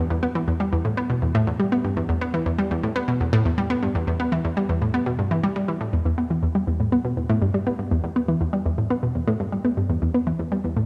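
Ambient music with a cosmic, mysterious mood, heard as a short cut from a longer piece in a straight 4/4 feel. A lone analog pluck carries the whole recording from 0.0 to 10.8 seconds, moving through a low register from E2 to B3. Its tone blends sawtooth and square waves, detuned, with a noise layer, and each note strikes with a fast attack and a short decay shaped by a filter pluck. The sound sits up front, bright yet round, thickened by chorus and trailed by tape echo. A wet concert hall reverb with a 2.4-second tail surrounds the pluck, lending a spacious atmosphere to its notes.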